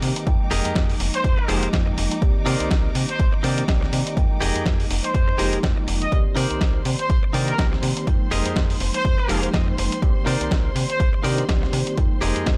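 A clear, distant trumpet section carries the melody from 1.1 to 11.1 seconds, its light vibrato riding a sidechain pump over this groovy, sensual slice of filtered disco house in C minor at 123 BPM with a swung sixteenth feel. Beneath it, a snappy FM bass with a metallic attack and a twangy, direct-recorded clean electric guitar riff both pulse with the same pumping, the guitar adding a short fill at 9.3 seconds. An overdriven reed electric piano, mellow through a combo amp, fills out the accompaniment with fast tremolo and phaser. A rich violin section holds sustained chords in the background, roughened by vintage 12-bit sampler grit. A dusty, tape-toned sampler kit of hi-hat and medium-tuned snare plays from the start, and a punchy analog kick joins it at 0.3 seconds, both re-recorded in a large room, as the harmony alternates between Fm11 and Cm9 in a dry, gritty hardware sound.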